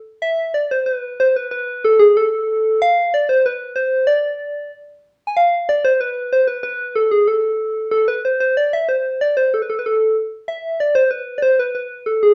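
Klezmer in a bittersweet, festive mood at 94 BPM in 2/4 with a straight feel, this short excerpt from a longer piece features a soft struck synth lead playing solo from 0.2 to 12.3 seconds, with a round, keys-like FM tone, fast-attack, decaying notes, chorus and vibrato moving between G#4 and G#5, tuned to A4 = 438 Hz, as it states a phrase and then repeats it from 5.4 seconds within a wet studio reverb heard from further back in the room.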